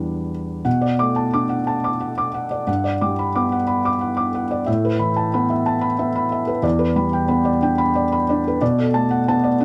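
Neoclassical minimalist piano in 6/8, this brief piece, cut from a longer work, moves with an unhurried rubato that feels intimate and melancholic. A single felt-muted upright piano plays alone from start to finish at 9.6 seconds, spanning a broad register from deep bass to high upper notes. Its tone is soft, mellow and faintly vintage, and the close, detailed microphones place it up front, so the audible action noise of the instrument becomes part of the texture. The harmony drifts through Em7, Bm7, Gmaj7 and Asus2 before circling back to Em7 and settling on Bm7. A light reverb adds a gentle sense of space around the smooth, hushed playing.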